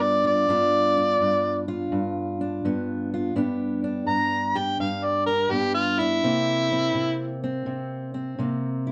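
A swung 4/4 at 84 BPM sets a laid-back, swaggering gait for this short stretch of acoustic country blues in G mixolydian, cut from a longer piece. An amplified, overdriven harmonica carries the melody up front, its gritty tone marked by vibrato, tongue slaps and scooped notes in a jazz-leaning solo that runs until 7.4 seconds. Beneath it, a fingerpicked steel-string acoustic guitar plays a dark accompaniment, also up front, with audible finger squeak, continuing alone to 8.9 seconds. The harmony sits on G7 before moving to C7 at 6.2 seconds. A short, wet studio reverb and a dark, warm production round out the duo's sound.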